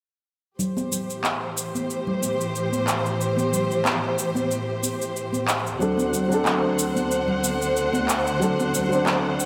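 A relaxed 92 BPM groove in 4/4 with swung 16ths is set by electronic cabasa and handclaps, layered and up front, while bright, compressed congas played with soft hands add a slapback echo from 0.6 seconds. In this wistful sunset chillout fragment in A dorian, a lush symphonic string section holds bowed, vibrato-rich chords over Am7, moving to D7 at 5.8 seconds. There a dark, mellow baby grand piano joins as accompaniment, intimate and vintage with audible action noise, delay and slapback echo, all inside a wet hall reverb with a big arena sound.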